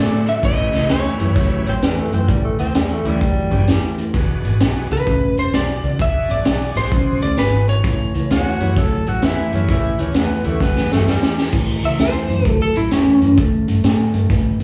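A laid-back, gritty electric blues shuffle opens with a dark, slightly broken-up lead guitar carrying the melody up front, while a bright, shouting tonewheel organ with key click and slow rotary speaker, a warm riffing guitar through a small old amp, and a round, foam-muted fingered bass fill in beneath it. A raw garage drum kit joins almost at once, saturated and up front, with a boomy kick, a high-tuned snare, and a rolled-off top on the hi-hat and crash. At 1.7 seconds a raspy, growling tenor saxophone adds a second line in a jazz style, returning later in the passage. The organ drops out at 10.6 seconds as the drums play a fill. From 11.5 seconds the lead guitar takes a solo over the shuffle, all of it heard as a live club gig through the venue's PA with the room's reverb around it.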